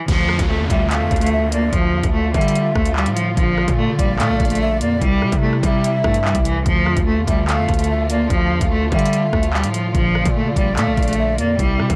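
Dark and ominous, this half-time drill cut sets a clear, focused bowed cello melody up front over an electronic kit with a knocking kick, bright hats, handclaps and rim clicks, while a distorted, saturated 808-style bass hits heavy and aggressive beneath. In the background sit a mellow tine electric piano, a lush, woody studio string section holding sustained chords, and a downlifter sweeping through the first 3.4 seconds. From 0.7 seconds a distant, breathy jazz flute with tape echo adds a hollow second line, all captured in a small, dry, gritty room.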